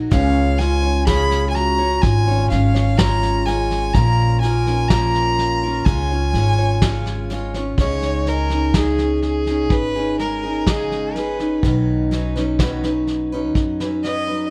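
A straight 4/4 pulse at 62 BPM from a vintage brush drum kit, with a punchy kick and a medium-tuned snare, sits under a woody, growly pizzicato upright bass in this gentle, hopeful acoustic folk piece in Db mixolydian, where a bright picked steel-string guitar with finger squeak accompanies a focused, lightly vibratoed bowed fiddle melody and a dark, smooth classical-style clarinet second line that stops at 7.3 s, before the fiddle takes a solo from 7.8 s over Dbsus2 and Cbadd9 chords, set in a warm production with moderate large-studio reverb.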